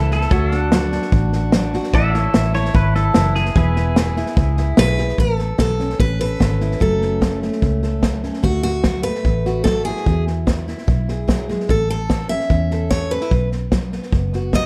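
Nostalgic and sunny, this honky-tonk and classic country excerpt moves at a straight 148 BPM in A major, with a punchy natural drum kit and a round, foam-muted vintage bass sitting up front beside a full-bodied picked dreadnought acoustic guitar playing accompaniment throughout. Through about the first 4.7 seconds a clean, compressed twangy electric guitar takes a solo soaked in spring reverb and tape echo, while a fingerpicked pedal steel adds sustained slide chords with volume swells until 5.2 seconds. At 4.8 seconds a second bright, fresh-stringed acoustic guitar carries the melody over a warm, dark production as the chords move from Aadd9 through F#m and Dadd9 to a closing B5.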